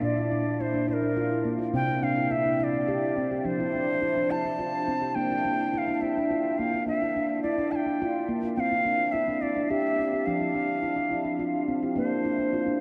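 Dreamy and calm, this short cut from a longer world-meditation piece drifts in a gentle, straight 6/8 pulse. A dark, ringing stainless-steel handpan plays arpeggios in its low-to-middle register, with a smooth, fingertip-struck tone that sits up front. Above it, a bansuri carries the melody with an airy, bamboo voice: reedy and bright, with a straight tone and crisp attack that sound closely miked. Both instruments play together from the first moment to the end at 12.8 seconds, and each is treated with tape echo. A huge, wet ambient reverb places them in a vast, echoing space, while the harmony circles calmly through Bb, C and F.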